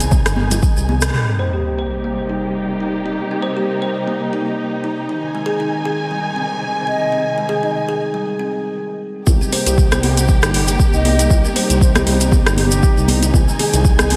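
Warm and earthy, this afro house excerpt in C minor moves at 118 BPM with a light swing, its dreamy mix soaked in lush hall reverb. Dark, bowed strings with vibrato and a woody, thumbnail-plucked kalimba ring out through a pumping, filtered haze, while a short opening groove of overdriven electronic kick, metallic-hatted afro-pop kit, grainy tube shaker, high-tuned congas and a rumbling detuned saw bass gives way at 1.1 seconds to an electronic sub drop and a filter sweep on the strings. A pure, hollow concert flute first appears at 6.9 seconds, and after a brief stop the groove returns at 9.3 seconds, with the kit rejoining at 9.5 seconds and the deep, up-front kick driving the drop.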